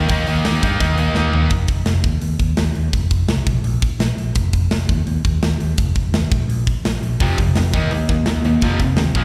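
Two bright, overdriven electric guitars open this rebellious, upbeat punk rock excerpt with a picked riff carrying a slapback echo, alongside a growly, punchy picked bass, while a tight, polished drum kit of hi-hat, kick, snare and toms joins a moment later and closes the opening with a fill. The guitars stop at 1.5 seconds, leaving the up-front bass and airy, big-room drums to drive on alone until the guitar riff returns at 7.2 seconds. It sounds like a live gig heard through the venue's PA, with the reverb of a recital hall.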